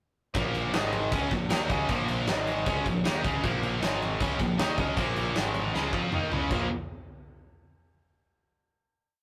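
A driving, straight 4/4 pulse at 156 BPM powers this short, aggressive hard rock piece in Bb minor, tuned slightly sharp to A4 = 443 Hz. A huge arena drum kit sits up front with a fat snare, punchy kick, crash cymbal and toms, laying down a big rock groove in a natural, big-room sound, and it closes the riff with a fill from 5.7 to 6.5 seconds. The main power-chord riff comes from an up-front, high-gain distorted guitar, picked and double-tracked with a bright edge, backed in the background by a second overdriven electric guitar playing the same kind of double-tracked riff. A growling fingered electric bass, overdriven and both direct and amped, drives steady eighth notes that double the guitar riff, cycling between Bb minor and Ab power chords. The riff runs from 0.3 seconds until a final Bb power chord rings from 6.5 to 8.1 seconds, all captured as a rough rehearsal-room recording with tube saturation and a moderate small-room reverb.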